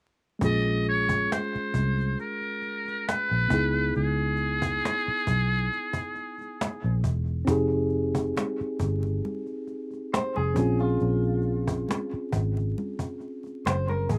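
A muted trumpet, electric piano, fingered electric bass and cajon all start together at the opening of this short, soulful neo-soul and R&B excerpt in Bb minor, moving at a smooth, unhurried 68 BPM with a light swing on the sixteenths. The trumpet carries the melody up front through its metal mute, buzzy and raspy with vibrato, scooped notes and a growling jazz edge, and it stops at 7.0 seconds. Underneath, the mellow tine electric piano sits clean and direct, while the dark, round, foam-muted bass punches forward and the cajon offers a snappy, band-limited snare rattle from soft hands. Bright, thin-skinned congas played with hard hands slip into the background at 7.5 seconds, and at 10.1 seconds a twangy, slightly broken-up electric guitar adds a picked second line with slapback echo. The harmony moves through minor ninth chords, from Bbm9 to Dbm9 and Fm9 before returning to Bbm9, and the dry, roomless sound carries a layer of vinyl crackle.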